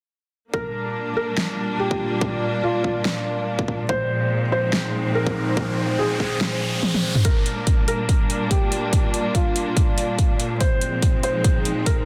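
A punchy, tape-warm electronic kick sits up front in this chaotic, menacing heavy wobble dubstep cut at 143 BPM in G phrygian, with a half-time, swung feel. A huge-snared dubstep kit with metallic hats and toms joins at 1.4 seconds, while a clear, bowed studio string section holds pumping, low-pass filtered chords and a felt-muted upright piano with audible action noise carries a soft, intimate melody through tape echo. A warbling, nostalgic lo-fi pad drifts in the background with chorus and reverb, and an electronic riser, a brief kick dropout and a drum fill lead to a build-up from 7.2 seconds, all within a dense, heavily limited master as the chords move between Gm and Fm.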